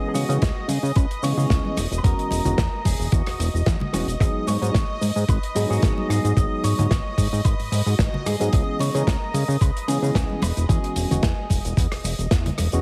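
A clean tine electric piano, heard through a combo amp, opens this sleek, groovy nu-disco cut at 0.0 seconds, pumping against the beat beside a lush, detuned unison pad that holds high sustained chords with chorus and phaser. Within the first half second a fat, saturated analog bass, congas and a studio drum kit with hi-hat, rim click, shaker and a medium-tuned snare join in, and a gritty, thumpy electronic kick arrives up front at 0.4 seconds. The tempo sits at 111 BPM in 4/4 with a light swing on the sixteenths, in G# minor, cycling through C#m7, E69 and G#m7. A bright, twangy electric guitar carries the melody through an envelope filter and tape echo, its picked notes clean and compressed. Damped, hard-handed congas sit close and dry in the background, while the bass stays thick and sustained beneath everything. The mix is heavily compressed with a radio-like sound and a light small-room reverb, and this passage is taken from a longer piece.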